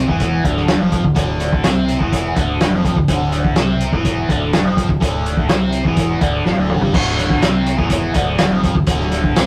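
A straight 4/4 pulse at 124 BPM drives this mysterious, hypnotic psychedelic rock clip in D minor, where a biting, double-tracked overdriven guitar riff with phaser and a growling, punchy fingered electric bass share the opening from 0.0 seconds, a muffled, lo-fi vintage drum kit with dark cymbals and a punchy kick joins at 0.1 seconds, and a drum fill at 6.5 seconds leads into a new section at 6.9 seconds, all captured in a rough rehearsal-room sound with moderate reverb and warm saturation.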